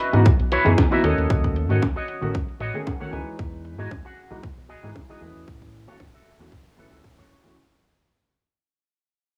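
Dry, this short nu-disco cut from a longer piece fades out across its full 7.6 seconds, with a filter sweep running over the drums the whole way. At 115 BPM in 4/4 with a light sixteenth-note swing, it feels groovy and sleek, moving through C#m11, D#m7b5, Emaj9 and A6. An overdriven electronic kick sits up front with a punchy weight, while the house kit adds a cracking snare and hi-hat, both overdriven, low-passed and re-recorded in a large room. A fingered electric bass with an envelope filter carries a round, tube-saturated low end, and a dark grand piano with long sustain plays mellow accompaniment, with sidechain pumping under a low-pass filter and slapback echo. On top, a bright, twangy, scooped electric guitar with an envelope filter picks a riff through analog chorus and slapback echo, and a clean electric guitar fill appears between 2.6 and 3.4 seconds.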